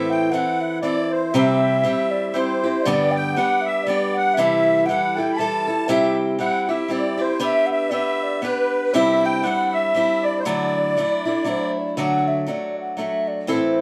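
A swung 3/4 lilt drives this cheerful, lively Celtic folk waltz, cut from a longer piece, where an airy, hollow wooden flute sings the melody with vibrato and a soft attack over a boxy, woody picked acoustic guitar with old strings, while a reedy, shimmering musette accordion traces a second line until 11.7 s, the trio heard playing together in one room with a wet touch of reverb before a new section arrives at 12.0 s.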